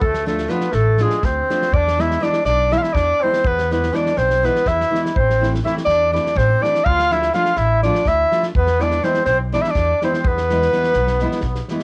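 A clear, classical-style clarinet leads up front with a fiery, virtuosic melody, colored by cassette tape. A distant, roomy trumpet with light vibrato plays a mellow second line beneath it, while a woody, thumpy pizzicato upright bass on gut strings adds tube saturation and a loose kit of fat snare and tight kick brings a rolled-off top and its own cassette grain. This excerpt of a Balkan wedding band tune in E phrygian dominant runs at 247 BPM in eighths in a straight 7/8, with a fingerpicked nylon-string guitar entering at 0.3 s over Dm, E and Am, finger squeaks audible in a small room's light reverb.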